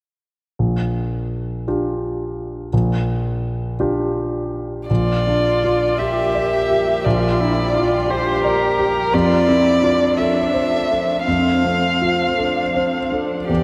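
Intimate and tender, this neoclassical piece for piano and strings drifts in a slow, rubato 6/8 at about 53-58 BPM, tuned to A4 = 443 Hz, and is cut from a longer work. A warm concert grand sits up front from 0.6 s, playing the accompaniment from a deep bass register upward with a polished, present tone, short sustain and audible action noise, moving from a Bb6 chord to F. At 4.9 s a single muted violin takes the melody, bowed con sordino with a veiled, shadowy tone and vibrato, close and up front with a touch of delay. A lone muted cello joins it at the same moment as a second line, also bowed and veiled, with light vibrato, portamento and delay. From 6.0 s a deep, moody ambient pad of detuned sawtooth and sine layers with a sub octave swells in slowly behind them, sustaining chords in the background through chorus and its own reverb. A lush hall reverb with a 2.8 s decay soaks the whole mix, giving it a dreamy, wet glow.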